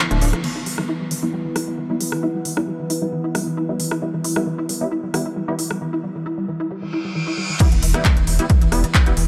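Awash in a huge ambient reverb over a dark production, this short excerpt of driving, hypnotic peak-time techno runs at 134 BPM in a straight 4/4 and sits on E minor. A squelchy, resonant blip pluck carries the riff throughout, with tube saturation, ensemble chorus and delay, while an aggressive, detuned rave stab adds ring-modulated sawtooth hits bathed in chorus, built-in reverb and digital delay. Underneath, an evolving analog drone with pulse-width modulation and a long release hums until 5.8 seconds. A techno drum kit with smooth hats, crash, ride, handclaps and rim clicks plays in a small room, its hats and cymbals pumping against the sidechain, and a reverse cymbal rises from 6.9 seconds into an electronic impact. At the drop at 7.6 seconds, a punchy, up-front electronic kick drum arrives, and a deep, thick, saturated sub bass returns beneath a low-pass filter.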